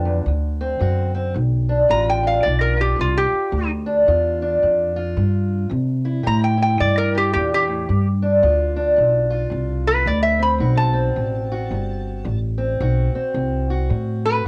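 A nasal, metallic lap resonator guitar carries the melody up front, played with slide and fingerpicks and colored by a cassette-tape character, entering at 1.9 seconds after a brief opening. This swaggering, rollicking piece of acoustic country blues moves at 110 BPM in 4/4 with a swung eighth-note feel, rooted in G mixolydian. Beneath the slide, a dark, boxy parlour steel-string acoustic guitar is fingerpicked as accompaniment, while a woody upright bass with steel strings is played pizzicato, both sitting up front alongside the melody. The harmony moves from D7 to G7, then to C7, back to G7, and on to D7 near the end. The small room's moderate reverb and the home cassette recording give it an intimate, lived-in sound, and the passage is cut from a longer piece.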